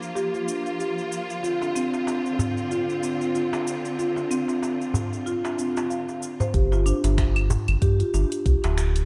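Organic downtempo with a mystical, hypnotic mood, moving at 94 BPM in 4/4 with a gentle swing on the sixteenths and tuned slightly low at A4 = 439 Hz. A bright, lush studio string section holds sustained, vibrato-rich chords over Gm7 and Dm7 with a sidechain pumping effect until 6.5 seconds. Up front, a woody marimba played with soft mallets on rosewood bars spins mellow arpeggios through a low-pass filter sweep and analog delay, joined from 1.6 seconds by a crisp, deep metal-shell darbuka played with soft hands, while an afro-pop kit of claves, finger snaps, warm hats and shaker ticks along in a small room. At 6.5 seconds the harmony settles on G5 as a dark, round, detuned analog bass enters with its own sidechain pumping, alongside a deep electronic kick sitting in the background. The dreamy mix is soaked in plate reverb and rolled off above 11.0 kHz, giving this excerpt from a longer piece a soft, hazy glow.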